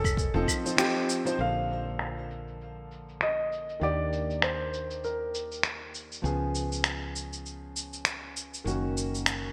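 A bright 1980s-style digital production drenched in wet plate reverb frames this sunny, warm sunset chillout excerpt at 99 BPM with a gentle 16th-note swing, where a dark, mellow grand piano with short sustain and delay carries the melody until 5.9 s, a clear, boxy, intimate grand piano with audible action noise and delay accompanies from 0.3 s, a woody, hollow-body fretless electric bass holds a round low line, gritty, tape-warm electronic claves, shaker and finger snaps sit up front under low-pass filters and gated reverb, a deep, layered electronic kick sounds only at the opening, a band accent lands at 0.8 s, and a filter sweep on the drums runs from 1.4 s as the chords move from F7 through Bbmaj7, Ebmaj7 and Db7 to Gb6.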